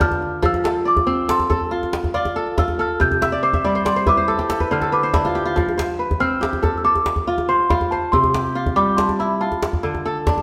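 This excerpt of West African string and xylophone music opens with a small celesta carrying the melody up high, its bell-like, delicate tone struck with soft felt hammers, over fingerpicked kora arpeggios and a tight djembe. Set in F lydian at 94 BPM in a flowing 12/8 and tuned to A4 = 442 Hz, the piece has a hypnotic mood. The celesta takes a solo through the first 5.6 seconds, while the kora, ringing and crisp near the front, adds a fill from 3.2 seconds as the harmony moves from F to C and then briefly drops away from chords. The djembe sits close and up front with a cracking attack. A second section begins at 5.6 seconds, returning to F and passing through C before landing on D minor, and the celesta finishes just before the kora and drum. The players share one stone room whose wet reverb, lasting 1.4 seconds, gives the live ensemble a sense of space.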